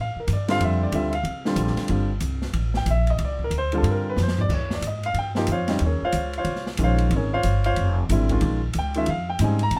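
Intense and hypnotic, this brief modal jazz passage comes from a longer piece and swings along at a brisk clip. A baby grand piano, natural-sounding with short sustain and placed up front, carries the accompaniment, voicing a C13sus4 chord before moving to Eb13sus4 at 4.5 seconds. Beneath it, a plucked upright bass with steel strings sits equally close, its woody, growly, thumpy tone giving the groove real weight. An acoustic jazz kit joins at 0.3 seconds from a small room, mixed further back, with dark cymbals, a medium-tuned snare and a boomy kick, and it slips in a short fill just before the chord change. Light reverb lends the trio a gentle sense of space.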